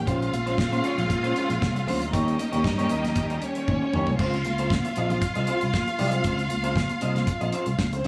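This driving, glamorous disco passage, cut from a longer piece, opens with a dark violin section up front, its bowed lines smooth on top with vibrato and expressive portamento, over a punchy, amped fingered electric bass. A damped 70s drum kit joins almost at once, dry and polished with a fat snare, tight kick and dark cymbals. Very quiet, high-tuned congas played with soft hands add a bright, close colour. An electric guitar at the edge of break-up supplies picked, compressed accompaniment with a slightly broken-up edge. In the background, a clear, lush string section holds sustained chords from a distance, moving from Bbm9 to Eb7 before it stops at 4.2 seconds. A drum fill from 3.7 seconds leads into the second section on Dbmaj7, and the ensemble sits in a small room ambience with light studio reverb.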